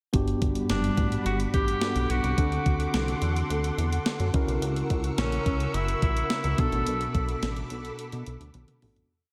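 This short 1980s-style pop piece in G major opens at once with a clean 12-bit drum machine, a chorused synth bass, a tine electric piano and a soft string machine, all at 107 BPM in a straight 4/4. The drums sit up front with a thumpy kick, a medium-tuned snare and a big backbeat, recorded in a large room. The glossy bass blends pulse and sawtooth tones with a filter sweep in a syncopated pop-funk line. The electric piano holds close-voiced chords through its built-in speakers, while the silky string machine lays a slow-attack ensemble-chorus pad over the Gmaj7, D7, F#7 and Bm7 changes. At 0.7 s a breathy alto saxophone enters with bright, vibrato-laden hook phrases trailed by tape echo. The romantic, dreamy mix is soaked in huge ambient reverb and begins fading at 6.9 s, with a drum fill arriving at 8.5 s to close it out.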